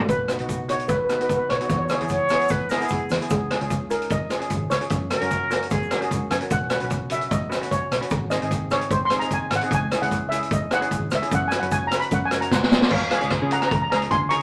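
A mellow steel pan opens this sunny, bouncy calypso excerpt, and a brighter, shimmering steel pan takes the melody almost at once as a solo running until 12.9 seconds, over a round, dark fingered electric bass in the background and an up-front street-band drum kit with a boomy kick, high-tuned snare and dark cymbals. A grainy egg shaker sits low in the mix, while an airy, expressive concert flute with vibrato adds a close second line between 2.1 and 6.2 seconds. A drum fill leads into a brief closing passage, all set in a moderate club reverb.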